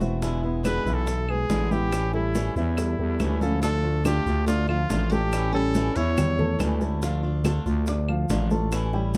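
Warm and danceable, this short cut from a longer Cuban son and guajira piece moves at 141 BPM in a straight 4/4, settling into D harmonic minor from 3.6 seconds after opening on E7 and A7 chords. A growling, thick FM bass sits up front with a fast attack and sustained notes, while a dark, mellow grand piano plays arpeggios with long sustain and a boxy, fingerpicked swing-style acoustic guitar fills in the accompaniment. Ringing, high-tuned congas, round low-tuned bongos played with hard hands, grainy distant maracas and woody, dry claves make up the percussion, mostly tucked in the background. A clear, punchy trumpet with vibrato and a smooth top carries the solo melody from 0.7 to 6.6 seconds, joined at 3.4 seconds by a fingerpicked flamenco guitar playing a second line in the background. The production is dark overall, set in a moderate small room.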